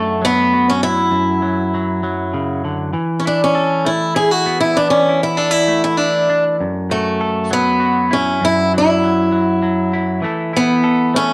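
A heartbroken, intimate folk excerpt in F# minor, moving at 99 BPM in a straight 3/4 and cut from a longer piece. A picked swing-style acoustic guitar carries the melody up front with a bright, boxy tone, while a semi-hollow electric guitar, clean, compressed and hollow-bodied, sits equally close as accompaniment across its span from F#2 to A4. A fingerpicked Celtic harp rings with a warm glow in arpeggios that are barely audible, falling silent at 2.3 seconds. Both guitars carry the grain of cassette tape, and the whole home recording sits in a moderate studio reverb. The harmony moves from F#m7 to E7sus4 at 2.9 seconds, returns to F#m7, and comes to rest on Esus4 at 10.2 seconds.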